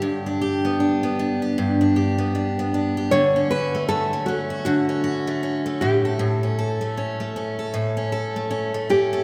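Pop in a heartfelt, carefree mood, this short swung excerpt pairs a fingerpicked nylon-string guitar melody, classical in tone with audible finger squeak, against an up-front picked steel-string acoustic guitar accompaniment moving from G through Dmaj7 to A7, both bathed in the long, wet reverb of a concert hall.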